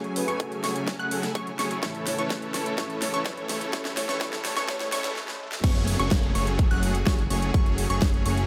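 Lightly reverberant, this uplifting, euphoric festival progressive house excerpt builds with a filter-swept supersaw riff carrying vintage sampler grit, a bright pluck arpeggio, smooth symphonic string chords, a background grand piano with dub echo, a breathy flute-like synth melody with chorus, a very quiet riser and downlifter, a punchy overdriven kick and a big-room kit with a huge snare and metallic hats, then pauses at 5.2 s before the drop at 5.6 s, where a fat, thick analog bass enters under the pumping supersaws.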